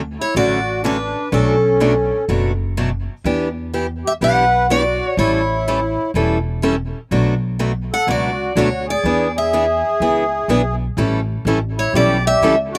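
A bright, picked steel-string acoustic guitar carries the melody up front, finger squeak and all, in this playful, swinging jazz manouche excerpt, joined by a boxy parlour-style second guitar with slapback echo on accompaniment, a sweet, reedy accordion second line with light tremolo tuning, and a woody, thumpy pizzicato upright bass on gut strings, all captured dry outdoors over chords moving from Dmaj7 through Bm9, Em9 and A7 to a closing A9.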